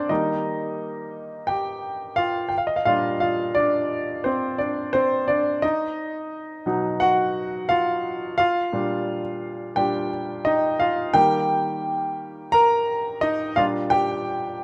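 Uplifting and warm, this short pop excerpt cut from a longer piece features a solo grand piano at 87 BPM in 4/4 with a straight feel in Eb major, moving through Eb, Bb6 and B chords across the range from Bb2 to Bb5. The piano sounds clear, intimate and polished, sitting up front with audible action noise. It plays from 0.1 to 14.6 seconds, set in a lush hall reverb within a rough home demo mix.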